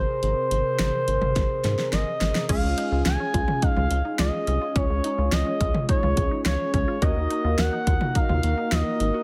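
Synth-pop at 106 BPM in Db major, wistful and bright, where a smooth, expressive portamento lead with vibrato, chorus and tape echo sings up front over a punchy, funky sawtooth polysynth comp with chorus, a rubbery, bouncy square bass, and an electronic pop drum kit with a fat snare and punchy kick whose fill runs from 1.4 to 2.5 seconds, before a juicy, squelchy blip pluck with phaser and tape echo enters at 2.5 seconds in the background as the chords move from Abadd9 to Db and Ebm under light reverb in this excerpt from a longer piece.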